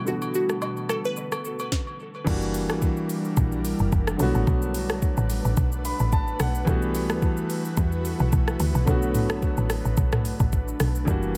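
A punchy, woody log drum bass with a fast, decaying attack arrives at 2.3 seconds, landing the drop of this deep, late-night amapiano excerpt after an opening filter sweep. Before that, a glassy, crystalline wavetable pluck carries a brief melody with chorus and tape echo, while agogo bells and woodblock add a small-room acoustic touch, also with tape echo. A smooth, electronic R&B drum kit sits up front throughout, its soft kick, sharp snare and metallic hats set in a gently swung groove alongside rim click, shaker, crash and toms. An intimate concert grand piano with audible action noise and a vintage, low-passed tone plays accompaniment and breaks out in a fill around 5.6 seconds. Beneath it all, an ethereal, airy pad holds detuned sustained chords with ensemble chorus, built-in reverb and sidechain pumping, over changes that move through Bm7, F#7b9b13 and Gmaj13/B inside an echo-heavy digital ambience.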